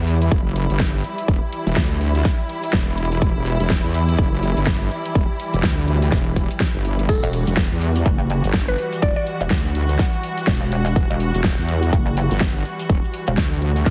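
A muted, veiled string section holding an Emadd9 chord and a heavy, wobbling sawtooth bass, both pumping under sidechain, open this swaggering, bouncy bass house excerpt in E minor at 124 BPM with a 16th-note swing, soon joined by a layered dance kit with a huge snare and metallic hats and a punchy, overdriven kick, before a woody, round mallet-like FM pluck with digital delay appears from 7.1 to 9.2 s alongside a grainy tube shaker in the background and a pulsing sine pluck bass, the whole heard through a heavily compressed, radio-like sound with light reverb.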